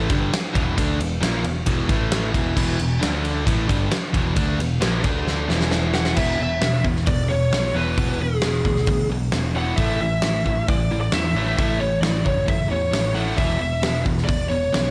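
A dry, punchy hard rock excerpt at 133 BPM, where a big rock drum kit with a fat snare sits up front over a picked bass and two background riff guitars, one hollow-body and overdriven, one tight and bright with distortion, until, during a drum fill that begins at 5.3 seconds, a lo-fi lead guitar through a small cranked amp with slapback echo enters at 5.9 seconds, powerful and energetic over chords centred on E.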